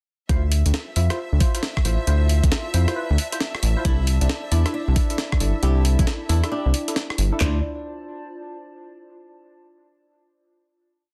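Dry, dense and heavily limited, this short, skippy and soulful two-step UK garage piece in D minor at 135 BPM swings on an overdriven garage kit with a knocking kick and woody snare, layered with a gritty sampler-style breakbeat kit of skipping hats and rims, beneath a rubbery, up-front square bass line, chorused and delayed organ-like stabs, a clear studio violin section holding a high note with sidechain pumping, and a nostalgic, warbling lo-fi tape pad in the background that lingers to 9.1 s, while a bright, fingerpicked flamenco guitar riff with dub echo enters at 3.9 s as the harmony moves from Dm7 to C69.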